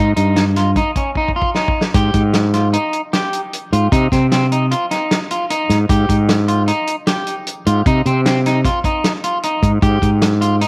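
A punchy, bright fretless bass underpins this driving progressive instrumental in 5/4 at 152 BPM in Ab major alongside picked, slightly broken-up electric guitar arpeggios trailed by tape echo, with a dry, mid-forward soul drum kit with a fat snare and tight kick entering a moment later, whose fill from 1.2 to 1.9 s carries the harmony from a rootless Cm to Abmaj7, all set in a small room with light reverb in this short cut from a longer piece.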